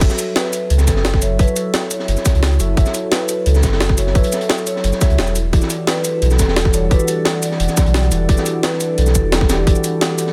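Lightly reverberant and warm, this excerpt of uplifting liquid drum and bass moves at 174 BPM, shifting from F#m7 to Em11 at 5.4 seconds. A round sine sub bass and an overdriven, tight electronic kick sit up front alongside a gritty, pitched-up jungle sampler kit and a dark, crunchy breakbeat kit with rolled-off top. Above them, a mellow tine electric piano runs through a phaser and low-pass filter, a metallic vibraphone melody with tape echo enters at 0.4 seconds, and a very quiet, glassy FM pad with ethereal chorus joins at 1.3 seconds.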